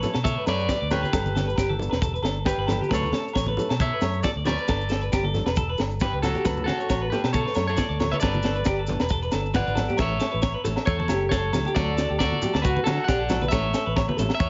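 A twangy, slightly broken-up electric guitar carries the melody up front in this joyful, sunny highlife guitar band piece, cut from a longer work, while a bright, compressed clean electric guitar picks arpeggios and a fingerpicked flamenco guitar, finger squeaks and all, sits in the background. A round, amped fingered bass and a tight funk kit with a high-tuned snare drive the swung groove, with saturated low-tuned congas, grainy maracas and ringing vintage agogo bells tucked behind them. A drum fill at 9.7 seconds moves the music from its Dmaj7 and Gadd9 sway onto A and D chords, all set in light small-room reverb with a soft, band-limited top end.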